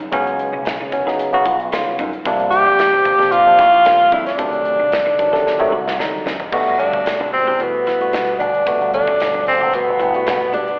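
A smooth-topped tenor saxophone with light vibrato stands up front in this slick, bright piece of electric jazz fusion, entering at 2.5 seconds and taking a jazz-style solo once the music settles into G major at 6.5 seconds. It moves at a straight 112 BPM in 4/4, carried by a punchy slap bass run through an envelope filter and a polished, airy modern studio drum kit with a punchy kick and medium-tuned snare, whose drum fill at 5.5 seconds leads into the solo. A clean tine electric piano played through a combo amp supplies the chords, while a very quiet, twangy, compressed electric guitar adds picked stabs. Very quiet thin-skinned congas fill in the percussion during the opening stretch and drop out as the solo begins. Both the sax and the drums carry a slapback echo, and the whole cut, taken from a longer piece, sounds like a live gig heard through the venue's PA, with recital hall reverb and a telephone-like tint.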